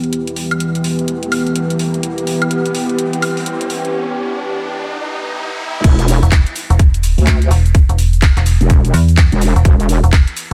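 A moody, sawtooth-rich analog pad with chorus and sidechain pumping holds E minor chords over a garage drum kit of cabasa, crash, handclaps, woodblock and warm, high-pass filtered hats. A riser enters at 0.6 seconds through a filter-swept build-up and break in this bouncy, gritty 126 BPM bass house clip with 16th-note swing, set in a light reverb. At 5.8 seconds the drop lands with a tight, up-front electronic kick and a heavy, saturated, detuned wobble bass, joined at 6.2 seconds by a metallic FM bass.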